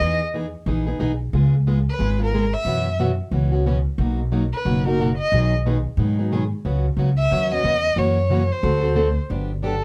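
A bowed violin with soft-attacked vibrato and expressive portamento carries the melody over picked parlour steel-string acoustic guitar and a woody, thumpy pizzicato upright bass in this playful, swinging gypsy-jazz excerpt at 181 BPM, moving from Emaj7 through C#7 and F#7 before a closing turn to Gmaj7 at 9.3 seconds, all heard up front in a moderate club reverb.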